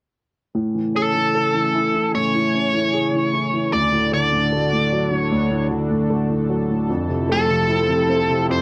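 Pop ballad at 76 BPM in A major, heartfelt and emotional, moving through Amaj7, D and Fmaj7 in this short excerpt from a longer piece. A present, polished grand piano carries the accompaniment from 0.5 seconds, alongside a lush, thick pad of detuned sawtooth unison with slow attack, long release and chorus holding sustained chords. At 1.0 seconds a bright, smooth overdriven electric lead guitar enters up front with the picked melody, touched by slapback echo, all within a dry, close 1970s-style studio sound with light reverb.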